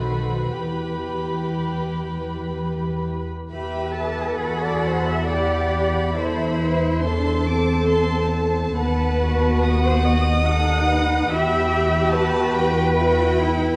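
Dark and wet with scoring-stage reverb, this fragment of a slow romantic movement for string orchestra unfolds with elegiac, solemn rubato in three, as a violin section sings the melody with vibrato over a second violin line with a smooth top, soft-attack violas supply a sul tasto accompaniment, woody cellos carry the bass, and intimate double basses sit up front beneath them.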